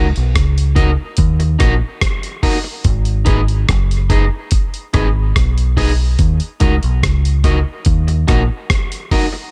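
A deep, fingered electric bass sits up front in this short dub reggae passage, dark and round with a direct, amped tone, moving through the low register until it drops out at 8.5 seconds. The drum kit has a gritty, compressed sampler character, with a thumpy kick, rim clicks and hi-hat placed close to the listener after entering at 0.2 seconds. Behind them, a picked electric guitar at the edge of break-up plays accompaniment with a twangy, slightly broken-up sound, colored by vibrato and dub echo, and carries on until 9.4 seconds. The straight 4/4 groove moves from Ebm to Abm and back to Ebm, creating a hypnotic, deep mood. A digital ambience surrounds the mix, and the clip sounds cut from a longer piece.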